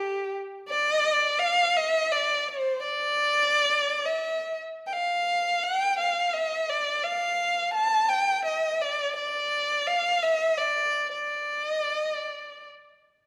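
Arabic music in D maqam bayati, a hypnotic, soulful excerpt at 85 BPM in 3/4 with a straight feel, tuned to A4 = 441 Hz. A lone dark violin plays solo and up front from 0.0 to 12.7 seconds, ranging from G4 to A5 with vibrato, portamento, a soft attack and a smooth top, its expressive bowed line carried by one player. A moderate recital hall reverb with an RT60 of 1.6 seconds surrounds the instrument.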